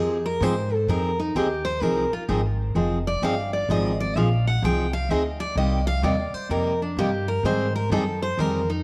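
Acoustic string swing in the jazz manouche style, this short bittersweet, virtuosic passage is cut from a longer piece and opens with a picked steel-string guitar taking the melody as a solo, its full-bodied dreadnought tone sitting up front and touched by tape echo. A second picked steel-string guitar, a jumbo with a warm, full-bodied tone, supplies accompaniment over Fm7, Cm7 and Abmaj7, while a woody pizzicato upright bass anchors the low end. A moderate echo chamber reverb and small room ambience surround the ensemble, which plays from 0.0 seconds; the accompaniment ends at 8.6 seconds while the melody and bass carry on to 8.8.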